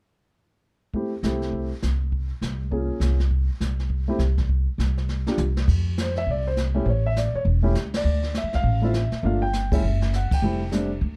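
A dry, dark-toned recording puts an intimate grand piano, its action noise audible, and a woody pizzicato upright bass up front, while a brushed drum kit sits distant and roomy with a punchy kick. This relaxed, playful jazz piano trio swings briskly at 202 BPM in F major, the piano carrying the melody over the low register of the bass and the drums' brushes, hi-hat and ride. A drum fill at 5.1 seconds leads into a second section marked by band accents at 7.9 and 9.7 seconds and a close on an Fmaj9 chord at 10.4 seconds.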